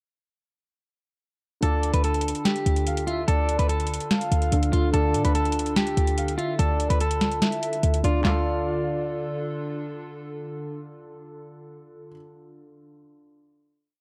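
A dark, close production with little reverb frames this short, eerie and melancholic trap piece in D minor, moving at 145 BPM with a half-time feel. From 1.6 seconds, a booming analog drum machine sits up front with a bouncy beat of metallic sixteenth-note hi-hats, fast hat rolls, handclaps and a tonal snare. Beneath it, a punchy, tight 808-style bass holds long sub-bass notes with pitch slides. A slightly broken-up electric guitar carries the looping, sample-like melody through spring reverb and tape echo, while a soft, round synth lead with vibrato traces a sparse counter-melody higher up. A mellow grand piano with audible action noise holds spread chords, joined from 2.7 seconds by a warbling, nostalgic tape-like pad washed in chorus and phaser. After the hook, the piece settles on a final D minor chord from 8.2 seconds, with the piano ringing on until 14.0 seconds.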